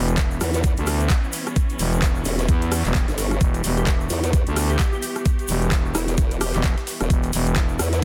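Bass house at 130 BPM in E dorian, this short excerpt struts with a swaggering, bouncy 16th-note swing, sitting on a single E minor chord throughout. The low end is dominated by two up-front basses, a thick, growling FM bass and a saturated formant-sweep wobble bass with chorus and overdrive, both pumping against an overdriven, knocking electronic kick. A garage drum kit adds handclaps, rim clicks and metallic hats, joined by a grainy, close egg shaker and a very quiet, gritty breakbeat sampler-style kit with a pitched-up, high-tuned snare. Behind them, a rich chamber string section holds bowed, vibrato-laden chords that also pump with the sidechain, while a deep, moody ambient pad floats very quietly above. From 3.8 to 6.6 seconds a crystalline wavetable pluck appears in the background, warbling through chorus and tape echo. The sound is a dense, heavily limited modern master wrapped in digital ambience.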